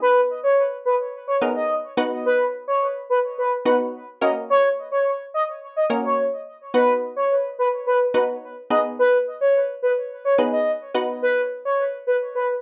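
Euphoric, upbeat pop at 107 BPM in B major, cut from a longer piece and moving through G#m, B, F# and back to B. A smooth, sawtooth-edged synth lead carries the melody up front with vibrato, chorus and delay, while a crisp, detuned, wave-folded chord stab with a fast attack and short decay accompanies it until 11.8 seconds. The rough home demo mix sits in a modest small-room reverb.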